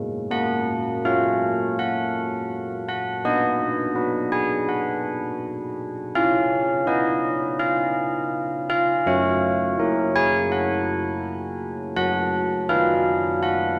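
A dark, warm recording set in a cathedral's wet reverb carries a solo carillon, its bronze bells ringing mellow and soft with a minor-third overtone, padded clapper and up-front, boxy small-room sound. This festive yet serene classical tune for church bells moves in a straight 4/4 at 82 BPM in F# major, tuned to A4 = 435 Hz, spanning F#3 to G#5. Cut from a longer piece, the passage runs through chords of F#/A#, B, C#7 and F# before settling on B/F# at 12.0 seconds, ending at 13.8 seconds.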